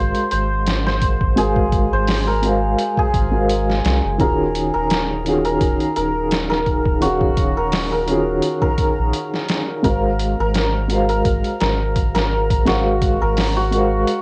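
This cassette home recording sounds dry and close, with the santur, the piano and the drums all up front. It is a short section of a melancholic, cinematic trip hop piece at 85 BPM in 4/4, with a light 16th-note swing, moving from Ab13 to Ebm11 and back. A dark upright piano carries the accompaniment with a woody, boxy tone, audible action noise and long sustain, colored by tremolo, cassette tape and tape echo. Over it, a bright hammered santur sings the melody with a shimmering, ringing voice. A soft dub sub bass sits deep and round, its mellow triangle and square wave tone sustained beneath, and it stops at 14.0 seconds. A gritty, pitched-down sampler-style kit enters at 0.1 seconds with a thumpy kick, a medium-tuned snare and hi-hat, sounding compressed and tape-warm as if re-recorded in a small room.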